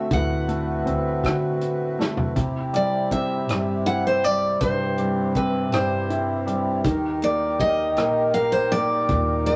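Hopeful and intimate, this short passage from a longer acoustic folk-pop ballad unfolds in 6/8 with a straight feel. A full-bodied steel-string dreadnought guitar carries the picked melody up front, while a felt-muted upright piano adds soft, mellow accompaniment, its thin felt and audible action noise drawing the listener close. A reedy pedal harmonium holds sustained chords with a breathing quality, and a woody pizzicato upright bass anchors the low end. A natural country drum kit with a punchy kick and medium-tuned snare, along with hi-hat, rim click and toms, enters at 0.1 seconds and plays a brief fill from 2.0 to 2.4 seconds as the harmony moves from D7 to C, later turning to Eb. A moderate small-room reverb gives the ensemble a snug, homely sense of space.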